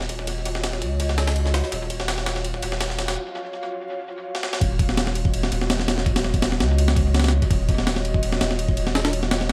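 Drum and bass with a jungle edge at 166 BPM in Eb minor, this frenetic, atmospheric 9.5-second cut sets an ethereal, airy pad of detuned, chorused chords over an Ebm9 and a round, deep sub bass beneath gritty, pitched-up breakbeat drums with a thumpy kick, medium-tuned snare, ride cymbal and dub echo, building under a filter sweep on the pad with a break at 3.2 seconds and a drum fill at 4.3 before the drop lands at 4.6, all in an echo-heavy mix dusted with vinyl crackle.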